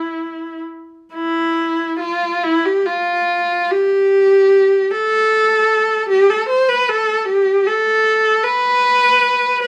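The rhythm moves freely in six-eight, stretched and pulled by rubato, so the pulse feels more breathed than counted. This is a brief classical passage for a single viola, cut from a longer piece, with a yearning, lonely mood. The viola sings in a compact middle register from E4 to C5, its rich, bowed tone shaped by vibrato, soft attacks and gliding portamento between notes. Though placed up front, the instrument carries a slightly distant quality, and light reverb gives the solo line a sense of space around it. After a short opening phrase, a new section begins at 1.1 seconds and continues to the end at 9.7 seconds, keeping the same expressive, solitary character throughout.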